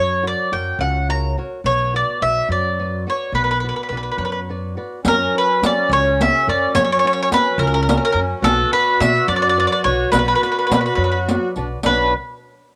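This Italian folk serenade, cut from a longer piece, sways in 6/8 with a wistful, romantic mood, and its harmony moves between F# and Bm. A woody, double-strung mandolin sits up front carrying the picked melody, its tone touched by cassette tape. Beneath it, a fingerpicked flamenco guitar gives soft accompaniment with tape color and plate reverb, while a pizzicato upright bass with steel strings anchors the low end. At 5.0 seconds a reedy, sweet accordion enters with a vintage, band-limited second line, lightly tremolo-tuned and set in plate reverb, and a riq joins with bright jingles in a small room. The whole has the intimate feel of a home cassette recording with light reverb.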